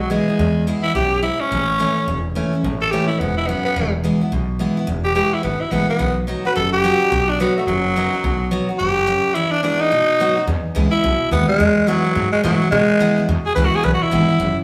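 A raspy, gritty tenor saxophone sits up front, carrying the melody with scooped notes and light vibrato before taking a solo from 10.5 s, in this rollicking, rowdy rockabilly fragment in E major at a swung 214 BPM. A full-bodied picked steel-string acoustic guitar, also up front, drives the accompaniment, while a woody, dark upright bass plucks the low end. The trio plays live together in one room, wrapped in a stone-room reverb.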